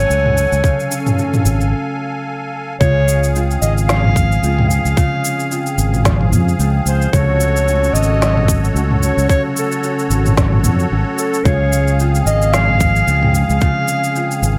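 Lightly reverberant, warm and delicate, this folktronica fragment sets a distant, roomy, classical-style clarinet melody with tape echo and plate reverb over shimmering, reedy musette accordion chords, ringing fingerpicked harp arpeggios with tape echo, an up-front fingered electric bass, and an overdriven electronic kit with a woody snare, shaker and toms, joined at 0.6 seconds by a tight overdriven kick, with a brief break from 1.7 to 2.8 seconds before the harmony settles into alternating Gbm and Dbmaj7 chords.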